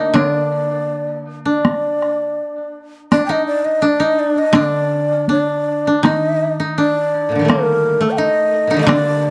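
Moving in a loose, rubato 2/4 at around 77 to 89 BPM, this calm, austere fragment of Japanese chamber music in D miyako bushi sets an up-front, breathy and hollow end-blown bamboo shakuhachi, tongued with a chiff over a straight tone, above two woody, fingerpicked kotos, one carrying a second line touched with analog delay and the other a low accompaniment, while solo taiko drums struck with heavy sticks in a small room enter at 0.2 s, the whole framed by dark production and plate reverb on the winds and strings before the music turns to a new section at 6.0 s.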